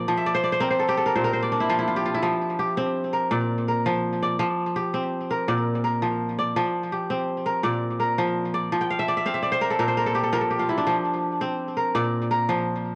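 A solo kora, fingerpicked and up front, carries this warm, flowing West African traditional excerpt in F major at 111 BPM in a straight 12/8, its crisp, ringing strings running from Bb2 up to G5 over harmonies that shift between F and Bb. Brief fills decorate the line near the start, from 0.2 to 2.2 seconds, and again from 8.8 to 10.9 seconds. The kora carries cassette tape grain and tape echo, set in a small room with moderate spring reverb that gives this home recording an intimate, slightly worn character.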